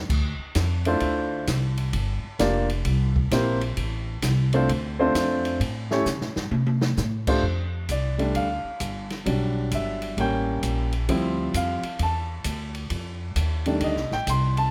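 Close, detailed microphones and light reverb frame this brassy, swinging big band jazz excerpt at 131 BPM in 4/4 with a swung eighth-note feel, where a woody, thumpy pizzicato upright bass on gut strings sits up front beside a warm, natural-sounding baby grand piano, an open acoustic drum kit with dark cymbals, a medium-tuned snare and a boomy kick plays a fill from 6.1 to 7.0 seconds, and at 7.4 seconds the music moves from D minor to F major as the piano takes a solo over rich chords such as F69, A7b9 and Dm11.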